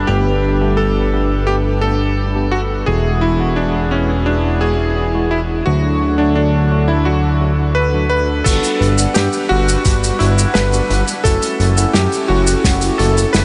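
An excerpt of nostalgic, driving synthwave opens on a clear, clangy electric grand piano carrying the melody through lush chorus and delay, over a fat, saturated sawtooth bass, a swirling phased pad that pumps with the sidechain, and bright tine electric piano stabs sitting in the background. Just after 8.4 seconds a very quiet, warbling FM bell begins a second line, and at 8.5 seconds the harmony shifts to Gmaj7 and F#m7 as a thumpy, tape-toned electronic kick and a loose indie kit with dark cymbals, hi-hat, shaker and snare join. The whole mix is dreamy and soaked in a huge ambient reverb, its top end rolled off.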